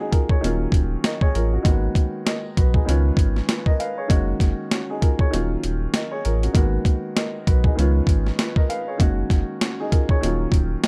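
A dark, mellow grand piano opens this moody boom-bap hip-hop cut, sitting up front with a boxy, cassette-tinted tone that is filtered at both the top and bottom. A sampler-style drum kit joins almost at once, compressed and pitched down into a gritty groove with a thumpy kick, a high-tuned snare and hi-hat, all played with a loose swing. From 0.4 seconds, a deep, round sine sub bass adds sustained low notes with a fast attack beneath the chords. The harmony cycles through D#m7, G#m7, C#7 and F#6, and a brief break at 5.3 seconds interrupts the flow before the progression comes around again. The overall production is dark and enveloped in digital ambience, and the passage is clearly lifted from a longer piece.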